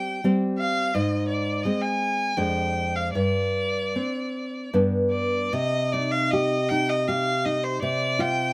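A romantic duo for violin and classical guitar in C minor, this melancholic, solemn fragment from a longer piece moves in a rubato 3/4 at roughly 74-86 BPM and is tuned to A4 = 436 Hz, with a rich, smooth bowed violin carrying the vibrato-laden melody over fingerpicked nylon-string guitar accompaniment whose finger squeaks come through the close, detailed miking and light reverb, shifting into a new section at 5.5 seconds.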